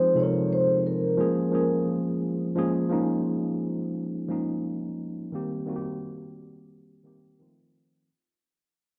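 Worn, warbling cassette tape colors this short lo-fi hip hop recording, with drifting pitch and a moderate plate reverb around it. The mood is reflective and melancholic, moving at 87 BPM in 4/4 with a swung sixteenth-note feel in Bb dorian. A vibraphone played with soft mallets carries the melody for the first 1.9 seconds, its metallic, ringing tone shaped by a low-pass filter, an analog delay and a slow motor vibrato. Underneath, a mellow tine electric piano plays the accompaniment throughout, slightly out of tune, clean and up front, and also passed through cassette tape and a low-pass filter. The chords move from Fm7 to Bbm7, then to Cm7 and F7, and from 2.6 seconds the recording fades out while a filter sweep runs over the electric piano until 8.1 seconds.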